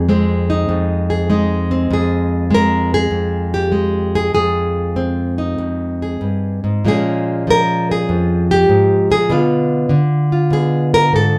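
Swung eighths loosened by rubato at 98 BPM in 4/4 carry this cool, moody solo jazz excerpt in F minor, where a bright, up-front fingerpicked nylon-string guitar in classical style, its finger squeaks audible, moves from Fm7 to Bbm7 at 6.9 seconds and Bdim7 at 9.3 seconds across 11.4 seconds, set in a short, wet studio ambience.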